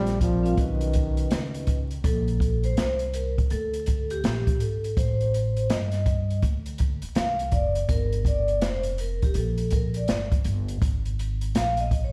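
The recording sounds as if it is playing through a big sound system in a bare stone room, with vinyl crackle and a light reverb around it. This relaxed, smooth jazz-hop excerpt moves at 82 BPM in 4/4 with a swung sixteenth-note feel, set in Bb major. A dark, close-miked trombone states a brief jazz-style melody with light vibrato, touched by plate reverb and tape echo, before dropping out at 1.6 seconds. Underneath, a woody pizzicato upright bass with steel strings and an acoustic drum kit sit up front. The kit has a boomy kick, a medium-tuned snare and hi-hat, recorded in a small room. Vibraphone played with soft mallets rings mellow and airy with a slow motor vibrato and plate reverb, taking a solo from 2.0 seconds to the end, as the harmony moves from Bb colourings through Am7b5, D7#9 and Gm7 to a closing Absus2.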